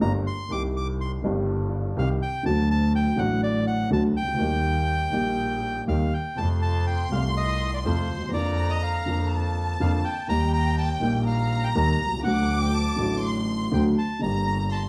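Tango at 123 BPM in 4/4, played with a passionate, playful rubato feel and tuned slightly low at A4 = 439 Hz. A reedy bandoneon carries the melody over a dark, woody upright piano and a focused, bowed double bass with vibrato, both up front, as the harmony moves from G minor through C minor, D, E-flat and F before returning to G minor. At 6.4 seconds a lush violin section enters with a second line, played sul tasto with soft attacks and light vibrato, and the whole ensemble sits in moderate studio reverb, heard from further back in the room.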